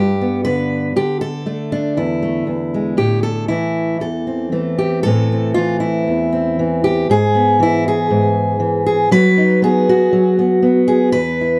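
Wistful and melancholic, this short folk passage, cut from a longer piece, features a single fingerpicked steel-string acoustic guitar played with a loose, rubato feel, its bright, fresh-stringed tone sitting up front in a dark, softly reverberant production. The harmony drifts from G through D5 and a suspended E7 before settling on Am at 3.0 s. A second section begins at 5.0 s and leans into the more poignant colours of E/G# and B/F# before the excerpt ends at 11.6 s.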